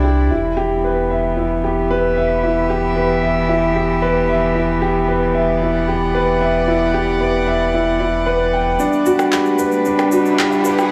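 A straight 4/4 pulse at 113 BPM carries this melancholic, hypnotic piano and strings electronica in E minor. An up-front, boxy grand piano repeats a delay-treated riff over sustained Em chords from a reedy, gut-string quartet with light vibrato, while a round sine sub bass sits beneath, set in a huge ambient reverb. At 8.8 seconds the sub bass stops as the harmony moves to Gmaj7 and a build-up with a filter sweep begins, bringing in overdriven electronic shaker, percussion blips and handclaps, with a background riser joining at 9.8 seconds.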